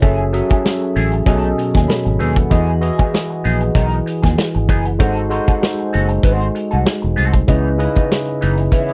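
Smooth and cinematic, this short cut of lush 1970s-style soul in G# minor moves at 96 BPM in 4/4 with a gentle sixteenth-note swing, passing through rich chords from F#m9 and B13 to Emaj7, G#7b9 and C#m9. A barky, lightly overdriven tine electric piano with lush chorus sits up front with the accompaniment, while a dark, slightly broken-up electric guitar plays a picked riff through wah. A round, foam-muted fingered bass and a gritty, punchy vintage drum kit with a rolled-off top anchor the groove, and a metallic vibraphone struck with hard mallets rings in the background with slow motor vibrato, all in a dry, close studio sound.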